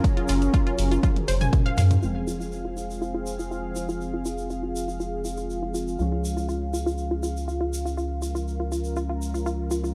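A straight 4/4 pulse at 121 BPM drives this hypnotic, cinematic melodic techno fragment in F phrygian, cut from a longer piece: a punchy, overdriven electronic kick sits up front alongside a layered house kit of hi-hat and toms, both treated with studio reverb, while a grainy acoustic egg shaker ticks quietly throughout. The kit rolls through a drum fill before the opening passage ends, and the kick drops out at 1.6 seconds, leaving a round, deep analog bass with a sidechain pump to anchor the low end. A fat, mellow analog lead with vibrato, subtle chorus and tape echo sings briefly over the opening Gb chord, above a bright, evolving resonant pad whose ring-modulated sawtooth tone carries chorus and vintage 12-bit sampler grit. A lush, detuned unison pluck spins arpeggios with tape echo, and from 2.0 seconds a filter sweep moves across it as the harmony shifts to Fm and later Db. Bold, brassy analog synth stabs enter at that point too, coloured by chorus and tape echo, and the whole recording carries a dry, gritty hardware character with a cassette tape patina.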